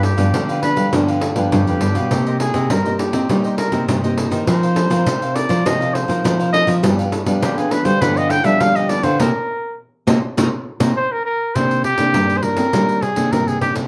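A vintage-toned trumpet leads this nostalgic, bittersweet samba and choro excerpt in C minor at 102 BPM, carrying the melody up front with a soft attack and a jazz-inflected solo voice from the first moment. Beneath it, a crisp, picked cavaquinho, a fingerpicked nylon-string guitar and a jingly pandeiro played with hard hands set the 4/4 groove, while a second full-bodied, classical-style nylon-string guitar holds down the bass line. The harmony moves through G7, Cm7, F7sus4 and back to G7 and Cm7, lending the melody a wistful pull. From 9.2 seconds the band joins in an accent, and the cavaquinho falls away at 10.9 seconds. At 11.6 seconds the music turns to a new section on a Cm9 chord, with the trumpet, guitars and pandeiro carrying it briefly before the cut, all set in a moderate studio ambience that keeps the warm acoustic blend intimate.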